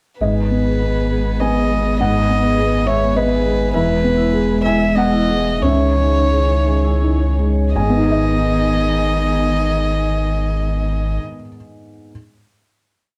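A reflective, longing neoclassical piece for piano and strings in G# minor, moving in a rubato 3/4 that drifts between 81 and 104 BPM and slows from 2.9 to 7.8 seconds. A felt-muted upright piano carries the melody over rocking broken chords, its tone soft and mellow with audible action noise and a vintage intimacy, and it rings on alone after the other parts stop at 11.2 seconds, finishing at 12.1. Up front, a single violin played sul tasto with light vibrato and an airy bow doubles the tune in thirds, while a woody cello holds sustained chords in the background beneath a warm, bowed chamber string section. A vibraphone with medium hard mallets adds a metallic, ringing pulsing ostinato with slow motor vibrato and tape echo in a boxy small room until 7.7 seconds, and a pure sine sub bass lays a deep, clean low drone underneath. The harmony passes from G#m through E and C#madd9 before settling back on a final G#m chord at 7.8 seconds, all set in light reverb with a dark production.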